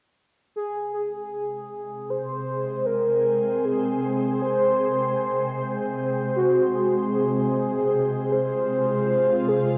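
A velvety synth lead with vibrato enters first at 0.6 seconds, its wave-folded tone drifting through chorus, phaser and delay, before an airy, detuned pad of sustained chords fades in at 2.0 seconds under a filter sweep, all in free time in Ab major moving to Fm at 6.8 seconds, set in a vast cathedral reverb with a cassette-tape grain that makes this ambient fragment feel peaceful and serene.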